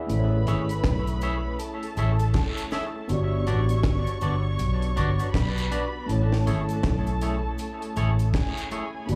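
Smooth and romantic, this short lovers rock reggae cut from a longer piece sways on a swung groove, with a round, foam-muted electric bass and a tight, high-snared reggae drum kit up front, a mellow tine electric piano and twangy, scooped electric guitar stabs soaked in dub echo and slapback, a lush, woody violin section singing a second line, and distant cabasa and guiro in the background, all heard through a club PA as the chords move from Amaj7 to Gmaj7 and back.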